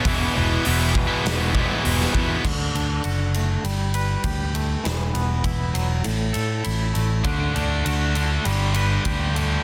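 A short cut of anthemic, bittersweet quiet-loud alternative rock opens on a wall of riffing guitars: a double-tracked, overdriven stack guitar and two scooped, high-gain distorted guitars (one tucked in the background), over a big-room acoustic kit with bright cymbals, a punchy kick and a growly picked bass. At 2.4 seconds the riffing guitars drop away and the groove falls into half time, as a clean, twangy electric guitar plays fingered arpeggios with tremolo over chords moving from D to Gadd9, Esus2 and A5. One scooped guitar riff returns at 7.2 seconds, with the up-front drums and bass carrying on, the whole mix set in studio reverb and a dense, heavily limited modern master.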